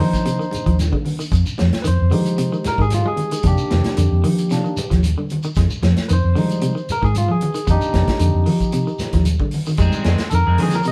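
Funky and driving, this short afrobeat passage in F dorian moves at 114 BPM in a straight 4/4, with a bright, barky tine electric piano taking the lead over a vintage fingered bass that sounds dark, round and foam-muted, and a soul drum kit with a punchy kick and rolled-off top. A twangy, slightly broken-up electric guitar plays tremolo-treated arpeggios while a grainy, mellow shekere adds texture and thin-skinned, band-limited congas sit in the background, and a second picked guitar adds stabs from 9.8 seconds. The band plays live in one room with light reverb, cycling between Cm7 and Fm7 chords, some over an F bass.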